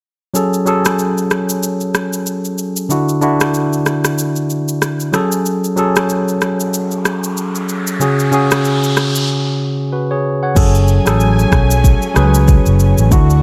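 A bright, clean tine electric piano opens this hypnotic, smooth afrobeats piece in F# minor at 94 BPM with swung sixteenths, joined almost at once by a produced afro-pop drum kit of deep kick, rim click, shaker and crash cymbal, with an electronic riser entering at 6.7 seconds ahead of a break at 9.3 seconds, after which a round, dark fingered electric bass sits up front and a lush, woody bowed string section adds sustained chords from 10.6 seconds, in a lightly reverberant space.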